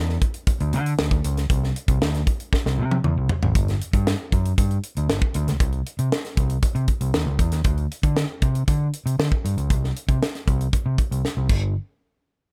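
An overdriven, round fingered electric bass sits up front in this upbeat, breezy slice of polished 1980s jazz-funk pop, moving in a straight 4/4 feel. A tight funk drum kit shares the spotlight from a small, natural-sounding room, its high-tuned snare and tight kick joined by hi-hat, crash and toms. A drum fill at 2.5 seconds leads into a new section at 3.5 seconds, and another fill arrives at 11.2 seconds, with the dry mix keeping both parts close and clear.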